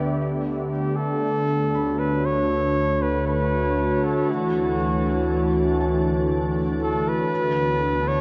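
Weightless and peaceful, this slow ambient fragment drifts at 59 BPM in 3/4, in D major and tuned to A4 = 435 Hz, with chords moving from Gadd9/D through Dmaj7 and A6/D to Bmadd9/D. Up front, a mellow flugelhorn sings a smooth-topped, classically styled solo melody trailed by delay, while a vintage analog pad of detuned sawtooth and triangle tones holds soft-attack chords with a subtle, warbling chorus and a filter sweep over the first 1.2 seconds. Beneath them, a deep, round sine sub bass sustains a low D, and high above, a very quiet, felt-muted upright piano adds boxy, intimate arpeggios with audible action noise until 7.3 seconds. At 2.8 seconds a calm, organ-like drone of detuned sine unisons fades in from the background, carrying its own ensemble chorus and built-in reverb. The whole ensemble sits in a vast, echoing cathedral space whose long reverb tail lets every sound float and blur together.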